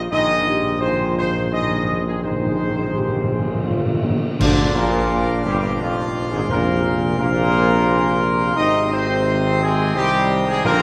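Majestic and triumphant, this classical ceremonial fanfare in uneven triple time sets a dark, up-front trumpet section's melody over sustained chords from clear trombones and softly vibrato-tinged French horns, a mellow tuba bass and calf-headed timpani that fill the opening until a band accent at 4.4 seconds brings in a brilliant plenum pipe organ with baroque chiff, while dark cymbals and concert bass drum sound until 5.8 seconds, all set in the reverb of a scoring stage in a brief cut from a longer piece.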